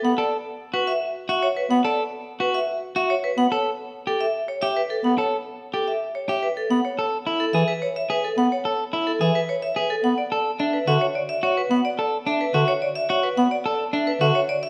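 Minimalist classical pattern music in 3/4 at 108 BPM, this hypnotic, bright passage cut from a longer piece drifts from a rootless Dadd9 and A7 into A major at 6.7 s, settling on Amaj9 and D69. A metallic, ringing vibraphone struck with hard mallets carries the melody with a fast motor vibrato and a vintage, band-limited tone, while a clear bass clarinet in classical style supplies the low accompaniment. A slightly broken-up, compressed electric guitar picks arpeggios, all three parts sitting up front in a moderate scoring-stage reverb.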